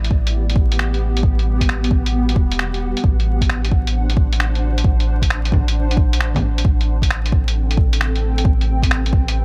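Future garage at 133 BPM with a swung 16th-note feel, this ghostly, melancholic passage is cut from a longer piece and moves through Gmaj7/A, D7/A and Am7. A blurred, detuned granular cloud pad holds slow-attack chords bathed in its own reverb, while a round, up-front dub sub bass pumps beneath it from the sidechain. A deep, layered electronic kick anchors the groove, and a muffled, pitched-down sampler-style kit of bongos, finger snaps and hi-hat adds a tape-soaked, small-room texture over a bed of vinyl crackle.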